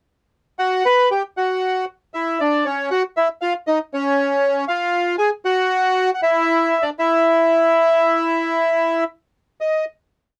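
Tango, melancholic and passionate, at 117 BPM in 4/4 with a rubato feel: a short complete piece for solo bandoneon, reedy and up front, which enters at 0.6 s and plays a motif-based melody in sentence-like phrases between C#4 and B5, partly doubled in octaves, over harmony moving from C#madd11 to C#, Esus2 and Dsus2 before a final note at 9.6 s, all in a dry, close 1970s-style studio sound with a boxy small-room character and light reverb.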